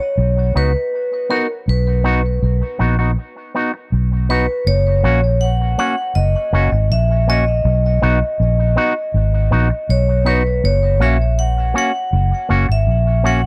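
A straight 4/4 roots reggae groove at 80 BPM sets a laid-back mood in B major, with a dark, round, foam-muted fingered electric bass sitting up front from 0.2 seconds and anchoring the shifts between B and F#. Over it, a bright, ringing vibraphone struck with hard mallets and its motor off carries the melody from the very start, close-miked and touched with dub echo. A clean, twangy electric guitar through an envelope filter, also treated with dub echo, supplies picked accompaniment in a dry, close 1970s-style studio sound with small room ambience, in this piece cut from a longer recording.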